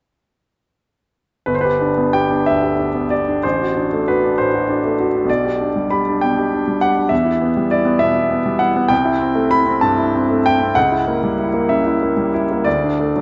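In a flexible 6/8 lilt of 58-68 BPM counted in dotted quarters and shaped with rubato, this hopeful romantic character piece for solo piano sits in G major and is cut from a longer work. A clear, intimate grand piano plays up front from 1.5 to 13.2 seconds, spanning G1 to B5, its long sustain and audible action noise giving the tone a close, polished presence. The harmony moves from G through D7/A, G/B, Em and Am7/C to a searching C#dim7 before arriving on D5. A wet concert hall reverb with a 2.3-second tail surrounds the instrument, and the spectrum holds nothing above 7.9 kHz.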